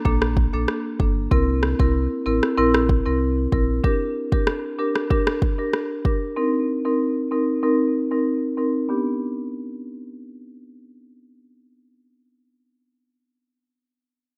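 A straight four-four dancehall groove, bouncy and tough, comes from an electronic afro-pop drum kit whose deep, overdriven kick and rim click sit up front until 6.2 seconds, while a full sine-and-triangle sub bass with an octave layer holds sustained low notes until 3.8 seconds, and a woody rosewood marimba played with medium mallets rides a filter sweep through 8.9 seconds and carries on alone in this rough, lightly reverberant home-demo fragment cut from a longer piece.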